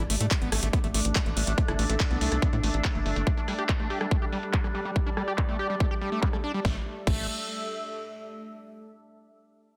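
A straight, driving pulse anchors this psychedelic trance excerpt, with a punchy, up-front electronic kick beneath a layered dance kit of huge snare, metallic hats, crash, handclaps and rim click, its hats, snare and cymbals low-pass filtered and the drums swept by a filter until 6.6 s. A tight, tube-saturated sawtooth sequencer bass plucks along until 3.2 s and returns at 6.6 s, while a squelchy, screaming acid riff, resonant, distorted and bright with chorus and tape echo, pumps with sidechain compression. Underneath, a detuned drone with moving overtones and a warbling, nostalgic lo-fi pad breathe with sidechain pumping, and the pad lingers alone at the very end.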